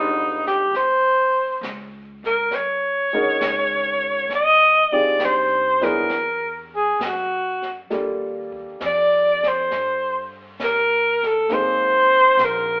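This is a slow, romantic jazz ballad at 67 BPM in 4/4, with a late-night mood and a swung eighth-note feel, cut from a longer piece. A bright alto saxophone carries the melody up front, playing with vibrato and scooped notes in a jazz style, yet it sounds distant and roomy. Beneath it, a woody upright piano with short sustain and a vintage character supplies the accompaniment, and a thumpy pizzicato upright bass with gut strings adds a dark low end. A brush drum kit comes in at 0.5 seconds, with brushed snare, hi-hat, a punchy kick and a high-tuned snare in a natural small-room sound. The harmony moves through rich chords such as Db7, Fm9, Ebmaj9#11 and Ab9. The whole mix is bathed in wet studio reverb and heard from further back in the room, with a telephone-like tone.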